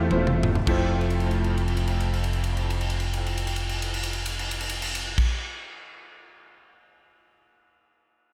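Jubilant yet reverent, this brief uptempo gospel fragment, cut from a longer piece, moves at 104 BPM in 4/4 with a swung eighth-note feel in F major, tuned slightly sharp to A4 = 441 Hz. A clear concert grand piano carries the accompaniment, opening on an Fmaj7 chord. It has natural tone, deep bass and long sustain, thickened by an ensemble chorus effect. Underneath, a fingered electric bass sits up front with a dark, round, punchy, direct-amped sound in its low register. A crisp fusion drum kit, recorded in an airy studio room with a polished finish and a punchy kick, plays fills almost throughout across crash, ride, kick and toms. Piano and bass stop at 5.2 seconds, leaving the drums alone until 6.8 seconds, all within a light reverb.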